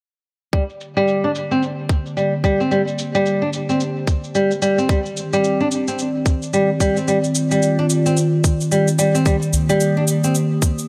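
This organic downtempo excerpt opens at 0.5 s with a dark, fingerpicked flamenco guitar playing arpeggios up front, softened by a low-pass filter and trailed by digital delay. Alongside it, a tight electronic kick sits forward in the mix, while a produced shaker rests quietly beneath. Both carry a tape coloring from being re-recorded in a small room, and the shaker is further dulled by low-pass filtering. From 0.9 s, a warbling, lo-fi pad of square and triangle tones holds slow-attack chords with a long release, its chorus and built-in reverb lending a nostalgic haze as sidechain pumping moves through it. At 9.5 s, a deep udu, close and dry, adds a brief acoustic accent. A light swing on the 16ths and a moderate, lush hall reverb give the piece a warm, earthy digital ambience.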